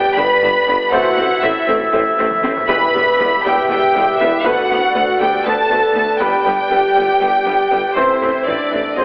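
An up-front violin section with a clear, smooth-topped tone carries a vibrato-rich second line over a lush violin melody in the background, in this dark, dramatic cinematic excerpt that moves in 7/8 at 238 BPM (counted in eighths) through G, Am, Em and D6. Distant French horns and woodwinds hold sustained chords, and at 0.9 s very quiet trombones and mellow, soft-attack trumpet stabs join them. Violas, cellos, double basses and a roomy tuba enter at 0.2 s alongside a hard-stick taiko ensemble that plays a fill at 2.3 s, and the whole mix sits in a wet concert hall reverb yet is squeezed into a heavily compressed, telephone-like radio sound.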